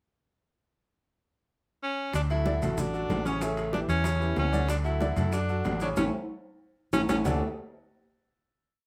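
A straight 4/4 salsa groove at 188 BPM in D major sets a festive, sunny mood: after a clear tenor saxophone pickup from 1.8 seconds, a dark, punchy hollow-body electric bass enters at 2.1 seconds with a tumbao that anticipates the chords, joined by grainy maracas and, further in the background, congas with slaps and open strokes, very quiet low-tuned bongos in steady eighths with hand bell, and ringing metal-shell timbales playing a shell pattern and bell. A brilliant, woody upright piano, slightly detuned with audible action noise, plays a montuno in octaves over the Dmaj7 and A7 vamp, while the up-front saxophone, with light vibrato and scooped notes, repeats short hook phrases. A band accent and drum fill lead to a final Dmaj7 chord at 7.2 seconds, heard from further back in a studio room with reverb.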